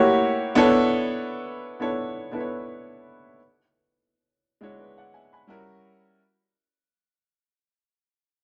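A natural, up-front baby grand piano plays alone across this 6.2-second soul fragment, cut from a longer piece, moving silkily through rich chords such as Bm11 and E13 with a gentle swing in its sixteenths. The bittersweet mood is deepened by a wet stone-room reverb and the feel of a live performance in one space, and the passage fades out from its first moment.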